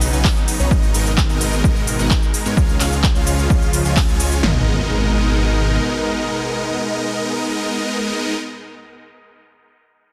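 A straight 4/4 drive at 129 BPM opens on a drop in G# dorian, with an overdriven big-room kit of punchy kick, snare and toms up front alongside crisp hats, handclaps and shaker, all ringing as if re-recorded in a large room, before the drums cut out at 4.5 seconds. Over this festival progressive house groove, huge, bright supersaw chords carry the riff through phaser and dub echo, while a slow-blooming supersaw pad and a thick, mellow detuned saw bass with chorus and tube saturation pump under the sidechain, moving from Badd9 through G#madd9 to C# before settling back on G#madd9. From 4.4 seconds a very quiet electronic impact sits beneath the sustained chords and pad, keeping this powerful, euphoric fragment dense and heavily limited with light reverb.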